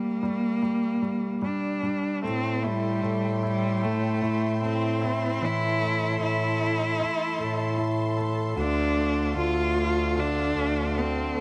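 A small room's light reverb surrounds this heartbroken pop ballad at 76 BPM, a brief cut from a longer piece in which an up-front, bowed cello carries the melody with vibrato and expressive portamento over a clear concert grand piano, whose action noise and long sustain feel intimate. At 2.2 seconds, as the harmony settles on Am7, a dark, breathy bass clarinet takes the bass line with jazz-style vibrato while a soft-attacked studio string section holds high sustained chords. The music moves to Dm7 at 8.6 seconds.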